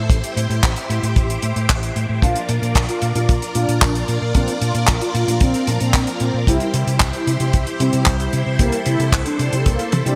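Italo disco with a bittersweet, danceable mood, this short excerpt opens on a lush string machine holding sustained chords through phaser and ensemble chorus, over a round, up-front hollow-body bass, a tight, dry kick and a damped 70s kit with handclaps, hi-hat and toms. At 2.2 seconds a brassy, detuned synth brass melody enters with chorus, vibrato and digital delay, joined by dark, mellow piano stabs sitting in the background. The chords move from Am to Bb to C under bright 1980s-style digital production with light studio reverb, and a drum fill lands at 9.9 seconds.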